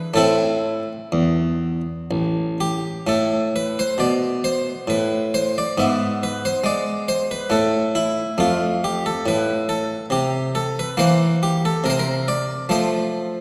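A round, plucked Italian-style harpsichord with one set of strings sits close and up front, playing alone through this flowing, radiant baroque-style suite movement in an unhurried, rubato triple time. Its full tone spans deep bass to bright treble and is carried into a long scoring-stage reverb as the harmony moves from its opening minor chord through a darker diminished passage to a chordless moment at 7.5 seconds, before settling toward a major close in this section cut from a longer piece.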